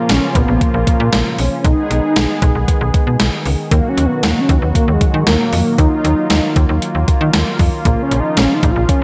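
A straight 4/4 pulse at 116 BPM drives this cool, nocturnal synth-pop excerpt in Eb minor, tuned to A4 = 437 Hz, where a thumpy, overdriven 80s digital drum machine with a gated reverb snare sits up front beside a snappy, metallic FM slap bass, while a brassy, detuned sawtooth pad with chorus and a filter swell holds sustained chords under a thick, dark unison lead with a sub octave, vibrato and tape echo, all within light digital ambience as the chords move from Bbm through Abm/Cb and Ebm back to Bbm at 7.9 seconds.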